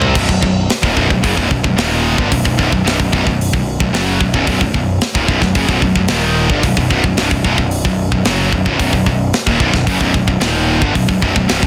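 Heavy and relentless, this heavy metal excerpt at 111 BPM in 4/4 opens with a drum fill before settling into a driving riff on a B chord, carried by two bright, picked high-gain guitars (one scooped, the other set back in the background) over a growly fuzz bass and a tight, up-front acoustic drum kit with a medium-tuned snare, a clipped kick, crash, hi-hat and toms, all in a small room with a dense, heavily limited modern master.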